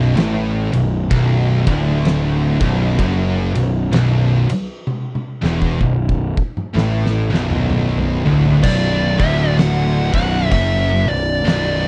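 Brooding and heavy, this stoner and doom metal excerpt crawls at 64 BPM in B minor with a swung 4/4 feel, as a double-tracked high-gain distorted guitar and two thick fuzz guitars, one very quiet and one in the background, grind out a low riff over a growly, overdriven fuzz bass that sits up front. An oversized low-tuned drum kit with a fat snare, punchy kick and dark cymbals pounds beneath them, rolling through a fill from 4.9 to 8.6 seconds before a fuzz lead guitar with slapback echo enters up front at 8.6 seconds. The sound is dry and close, like a 1970s studio recording.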